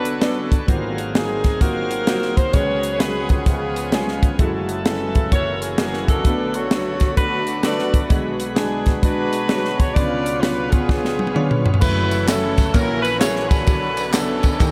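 A tight saxophone section with jazz-style vibrato carries the melody up front in this fervent, soulful swinging gospel excerpt, backed by an intimate grand piano with audible action noise and analog chorus, and a shouting tonewheel organ, lightly overdriven through a slow rotary speaker, holding sustained chords in the background. A crisp fusion drum kit with a punchy kick and high-tuned snare plays throughout, and after a drum fill at 10.9 seconds, compressed, saturated tambourine and group handclaps join at 11.8 seconds as the harmony moves from C#7b9 to F#m7. Huge ambient reverb soaks the whole mix in a dreamy haze.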